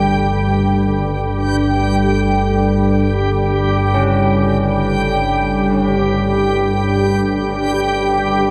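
Soaked in a huge, dreamy reverb, this unsettling dark ambient drone drifts in free time over a single sustained Gsus2 chord. Up front, an organ-like drone with ensemble chorus and ring modulation anchors the low end, joined by a reversed, granular swelling texture that glows brightly above, while a deep, warbling, detuned pad with a sub octave sustains moody chords beneath. In the background, bronze carillon bells ring out arpeggios through a diffuse ambient delay, lending the piece an ominous, tolling air.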